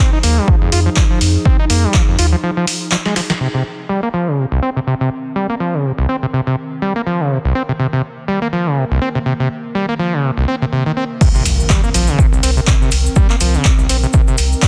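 A swung 4/4 groove at 123 BPM drives this hypnotic, gritty acid house fragment in C phrygian, cut from a longer piece. An overdriven, squelchy sawtooth acid bass riff runs up front throughout, saturated and resonant, with a filter sweep carrying it through the middle stretch from 3.4 to 11.2 seconds while the kick and drum machine fall away. Beneath it, a warbling, detuned tape-like pad holds sustained chords from Fm7 to Cm7 in the background, its lo-fi chorus and built-in reverb pumping against the sidechain. The opening pairs a punchy, overdriven electronic kick with a booming analog drum machine of crisp snare, metallic hats, handclaps and crash, plus a round sine sub bass, before a break and a drum fill close the section, with a band accent at 3.3 seconds. The drop at 11.2 seconds brings the kick, drum machine and sub bass back, joined by a grainy, close cabasa and a very quiet electronic impact, all in a dense, heavily limited, fairly dry master.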